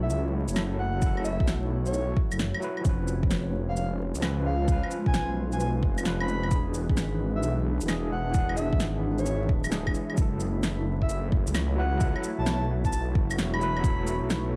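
A menacing, detuned sawtooth bass sits up front in this wistful, ghostly future garage excerpt, its saturated unison tone opening through a filter swell and pumping against the sidechain. Around it, an overdriven tine electric piano plays barky, gritty accompaniment through a combo amp, with medium tremolo, vintage 12-bit sampler grit, analog delay and the same sidechain pumping. A granular cloud pad holds blurred, mellow chords in the background with its own built-in reverb. Above them, a breathy, flute-like synth lead carries the melody with chorus, vibrato and analog delay. The groove sits at 131 BPM in 4/4 with a heavy 16th-note swing; an electronic shaker, fat snare and claves start almost at once, and a deep, tape-warm electronic kick joins at 1.0 s, both kits in studio reverb. In F# minor, the harmony moves from F#m7 through C#7/E# and E7 before returning to F#m7 as a new section begins at 10.2 s, all under a haze of vinyl crackle and light digital ambience.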